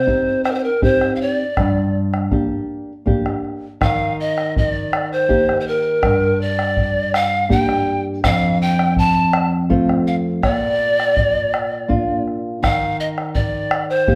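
Drenched in a wet large-studio reverb and captured as a band playing live in one room, this melancholic yet festive Andean folk fragment in 3/4 gradually speeds up as a breathy bamboo pan flute with vibrato, tongued chiff and rolled-off highs carries the melody up front over a thumb-plucked classical nylon-string guitar and a deep, dark bombo that enters at 0.1 seconds.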